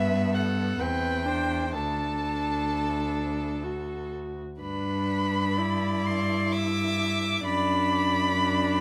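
Warm and serene, this fragment of a slow romantic string quartet movement sways in a rubato triple metre: a rich-toned first violin sings the high melody up front over a clear second violin line, a viola accompaniment and a cello bass that also sits forward, all four played bowed with smooth, even vibrato and captured by close, detailed microphones with light reverb.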